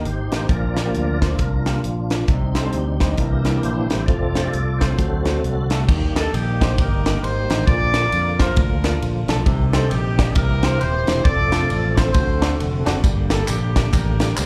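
This uptempo gospel excerpt opens on a lightly overdriven tonewheel organ taking the lead through the first 5.9 s, its full sustained chords carrying key click, chorus vibrato and a slow rotary speaker. Beneath it, a very quiet French horn section adds soft-attack, classical-style chords with light vibrato until 5.9 s. A fingered electric bass, direct and amped, and a tight funk drum kit sit up front, with dark cymbals, a high-tuned snare and a tight kick driving a swung 4/4 groove. A clear but worn grand piano supplies accompaniment from the background, touched with slapback echo. At 6.2 s a distant, roomy pop-style horn section takes over the melody with a warm tone and plate reverb, and at 13.0 s tambourine, shaker and group handclaps join from a live room. Heard through a club's PA with light reverb, the whole performance feels hopeful and jubilant.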